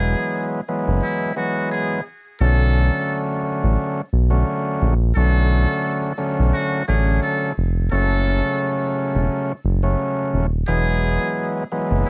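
Swung sixteenths at 87 BPM in 4/4 drive this gritty, reflective boom-bap hip-hop cut in B dorian, moving from Eadd9 through Bm7 at 2.4 seconds and F#m before returning to Eadd9. A deep, round analog bass with tube saturation sits up front, a reedy tonewheel organ plays accompaniment, and a buzzy, breathy trumpet with a metal mute carries a jazz-style solo melody with light vibrato, colored by tape echo and cassette filtering. The home cassette recording has light reverb, and this excerpt is cut from a longer piece.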